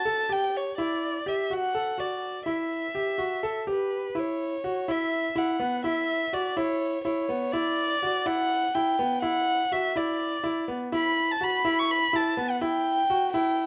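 Set in a straight 7/8 at 248 BPM in eighths, this restless, pensive contemporary instrumental moves from an Emadd9 chord to a rootless Bsus4 at 4.2 seconds. A dark, smooth-topped solo violin carries the melody from B4 to C#6, bowed sul tasto with a soft attack and light vibrato, while a clear baby grand piano, natural and intimate with audible action noise, plays arpeggios between B3 and A4. Both instruments sit up front, captured by close, detailed microphones with light reverb, and the passage is cut from a longer piece.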